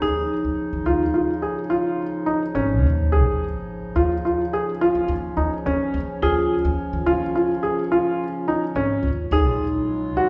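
This contemporary chamber piece moves in an uneven 11/8 metre with an urgent, restless mood, and it is cut from a longer work. Up front, a dark grand piano plays arpeggios with a mellow, worn and intimate tone, its action noise clearly audible, while an upright bass, also up front, supplies a woody, plucked low line on steel strings. A vibraphone struck with soft mallets carries a second line, its metallic, ringing sound shaded by a slow motor vibrato. Alongside them, a woodwind section holds sustained chords with a soft attack and a tight, classical blend. All four parts play from the start to 10.3 seconds, with the harmony resting on Dbadd9 before shifting to Ebm11 at 9.3 seconds. The recording sits in a church or concert hall, its wet reverb lending the ensemble a spacious, resonant glow.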